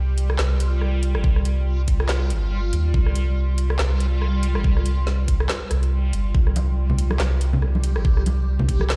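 Brooding and meditative, this deep dubstep excerpt at 141 BPM rolls in a swung, half-time 4/4 over a round, mellow sub bass and a reversed, granular texture with built-in reverb, while a garage kit of handclaps, metallic hats, rim click and woody snare enters at 0.2 seconds, an overdriven, knocking electronic kick joins at 1.2 seconds, and ringing, hard-handed congas arrive at 6.6 seconds, all heard as if played on a big sound system in a bare room.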